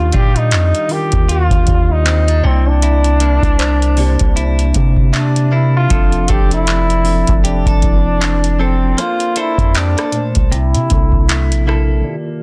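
A dry, dense and heavily limited mix carries this tender, romantic slice of contemporary R&B at 78 BPM in 4/4, with a swung sixteenth-note feel. A booming analog drum machine with a deep kick, metallic hats, handclaps and rim clicks sits up front beside a long, sine-toned 808-style bass, while a mellow tine electric piano and twangy, direct-recorded clean electric guitar arpeggios fill out chords that move from Ebmaj9 through C9, F6 and Bbmaj9 to C13. Over them a distant, punchy trombone sings a jazz-style melody with vibrato and tape echo, and an inharmonic FM synth chime with ensemble chorus and tremolo rings in the background from 2.4 to 6.2 seconds.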